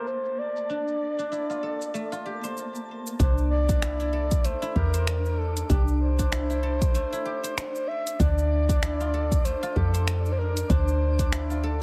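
A heavily compressed, radio-like, low-pass-filtered sound frames this mystical, meditative organic downtempo excerpt at 96 BPM with a 16th-note swing, where a breathy flute-like synth lead with chorus and delay carries the melody over silvery guzheng arpeggios, a twinkling granular texture in the background, and a tape-warm deep house kit of cabasa, finger snaps and hi-hat, until a filter sweep gives way at 3.2 seconds to a deep electronic kick and a woody, round FM bass pumping up front through the shift from Dm7 to C and back.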